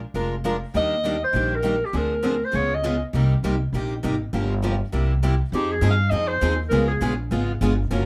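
This short cut from a longer piece of acoustic string swing in the jazz manouche style opens with a woody, thumpy upright bass, plucked on gut strings and set up front, joined almost at once by two picked steel-string acoustic guitars. Both guitars ring with fresh strings and audible finger squeak, one sounding boxy like a parlour instrument and the other suggesting a concert model, sharing the accompaniment in the same register. In C minor at a fiery 201 BPM with a swung 4/4 feel, the harmony moves briskly through chords such as Ebmaj7, Dm7b5, Db9 and Cm7. A bright, forceful clarinet takes the solo melody at 0.8 seconds, playing with vibrato and a punchy jazz attack that sits up front yet carries a roomy, distant quality. After a pause it returns at 5.5 seconds for the second section, over Fm9 and Db7, giving the passage a virtuosic edge under a light reverb.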